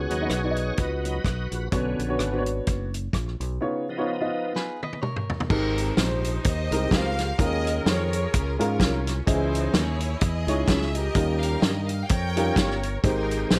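A swung 4/4 groove drives this uptempo gospel excerpt, with a tight-kicked, fat-snared soul drum kit and a growly, punchy fingered bass up front beneath a dark, woody upright piano. A shouting tonewheel organ, lightly overdriven through a slow rotary speaker, takes a solo over ninth chords in the opening seconds, while a drum fill and a brief clean, picked guitar line lead into the change at 5.5 s. From there a clear, focused string section carries the soulful, reverent melody under light reverb, and the organ returns briefly on the closing major-seventh chord.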